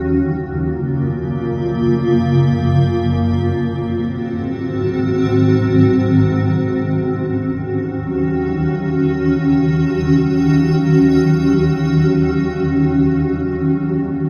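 This hip hop fragment drifts in free time in E-flat Dorian, with an ethereal, hazy mood. A single granular cloud pad carries the whole piece from start to finish, spanning Eb2 to Gb4 with a full-bodied, blurred tone built from detuned sine voices in unison. Its slow attack and long release let each chord hang and evolve, while its own reverb and a digital delay thicken the haze even as the sound stays bright and up front. The harmony moves from Gbmaj7 through Ab7 before settling on Ebm7 at 6.9 seconds, where a second section begins, and it returns to Gbmaj7 at 13.7 seconds. Light room reverb and a rough home demo mix give the cloudy texture an unpolished feel.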